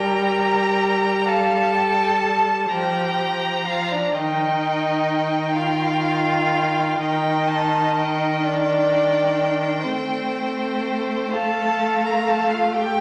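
Melancholic and elegiac, this slow romantic movement for string quartet unfolds in a rubato 12/8, cut from a longer piece and moving through G minor, E-flat and A minor seventh over its 13 seconds. A rich, focused first violin carries the melody while a smooth second violin plays an even line, a warm viola sits up front with its accompaniment, and a distant cello holds the bass. Each part is bowed by a single player with vibrato, and the quartet is set in the wet reverb of a scoring stage beneath a layer of vinyl crackle.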